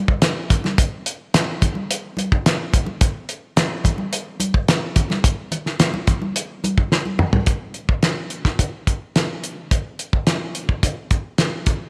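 Kaleidoscopic and hazy, this rock excerpt moves at 108 BPM in a straight 4/4, built on an up-front, cloth-damped drum kit whose thuddy tone pairs a fat snare and tight kick with a rolled-off top across hi-hat, snare, kick and toms. Bright, thin-skinned congas sit in the background from 0.5 to 7.5 seconds, and a drum fill at 6.9 seconds leads into the second section. A moderate echo chamber reverb with a 2.2-second decay lends the sound its misty depth.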